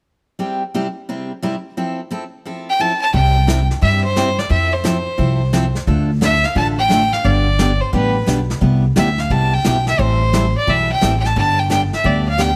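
A light reverb gives this country and western swing recording a close, friendly sound, with the guitar, fiddle and upright bass all placed up front. It opens on a picked steel-string acoustic guitar alone, its fresh strings bright and full-bodied as it moves between C and Fmaj7 at a brisk 175 BPM with a swung feel. At 2.7 seconds a single bowed fiddle takes the melody, clear and biting with a light vibrato and an intense edge. At 3.1 seconds the pizzicato upright bass and a vintage brush drum kit join, the bass woody with steel strings, the kit sounding like a small room with brushed snare, hi-hat, a punchy kick and a rolled-off top. The chords then travel through C, Fmaj7, Dm, G, Cmaj7 and Am7 back to G, giving this cheerful, down-home excerpt from a longer piece an easy, dancing lift.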